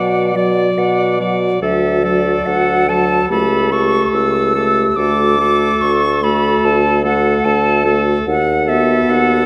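A slow, melancholic and yearning classical movement for wind quintet at 72 BPM in 4/4 with rubato, cut from a longer piece, where an airy silver flute with soft-attack vibrato carries the melody high above a bright oboe second line, a distant, roomy horn and a smooth-topped clarinet tucked in the background supply accompaniment, and an up-front bassoon anchors the bass through Bm, D, A7/C# and B7/D# harmonies in a reverberant concert hall.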